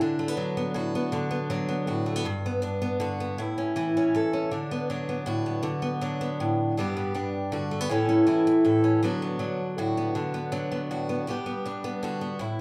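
A picked steel-string acoustic guitar carries this short highlife passage on its own, sounding up front with a warm, auditorium-like body as it ranges from G2 to A4. The mood is sunny and carefree, moving at 106 BPM in 12/8 with a straight feel, centred in D major. The harmony cycles through D6, G and A, returning to D6 at 4.5 and 9.0 seconds before settling on G at 11.3 seconds. A wet, large studio reverb with a 1.3-second tail surrounds the guitar, giving the sense of a band performing live together in one room. The passage lasts 12.6 seconds and is cut from a longer piece.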